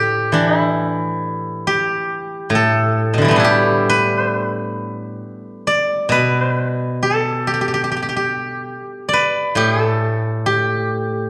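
Set in the lush reverb of a recital hall, this brief passage from a longer Chinese traditional piece features a solo steel-string zither, played up front with fingerpicks, whose silvery, ringing tone spans from A2 to D5 in a pastoral, elegant rubato over 11.3 seconds.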